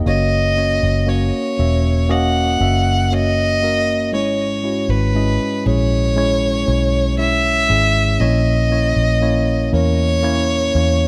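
A dark, woody violin carries the melody up front in this short excerpt from a longer pop ballad, a single bowed player using sul tasto tone and vibrato, with a digital delay trailing its lines. It enters at 0.1 seconds and stays within a narrow upper range. Beneath it, a mellow, clean tine electric piano supplies the accompaniment across a broad span of the keyboard, sounding direct and warm. A vintage fingered electric bass, foam-muted and amped, gives a round, punchy low end from the very start. At a slow 59 BPM in a straight 4/4, the harmony moves from F# to C#m/G# and then to A#dim, and a light reverb frames the emotional, melancholic mood.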